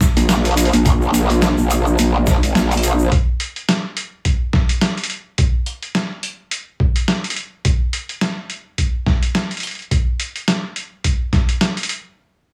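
A growling, saturated bass with chorus wobbles up front between 0.2 and 3.1 seconds over a thumpy, pitched-down electronic kick and a gritty, tape-warm boom bap kit of hi-hat and snare, while a grainy egg shaker sits in the background for the opening seconds of this funky, playful glitch hop excerpt at 106 BPM with a swung 16th-note feel and small room ambience.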